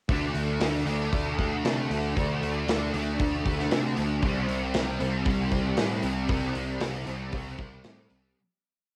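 Hazy and dreamy, this short shoegaze and dream pop piece rides a thick, double-tracked fuzz guitar riff up front, its ringing chords moving from D5 to C5 at 4.2 seconds through ensemble chorus and cassette tape coloring. Beneath it, an overdriven, warm picked electric bass pushes driving eighth notes while an acoustic rock drum kit with a punchy kick and medium-tuned snare carries a big groove. Light reverb and small room ambience soften the home cassette recording before a fade-out that begins at 6.3 seconds.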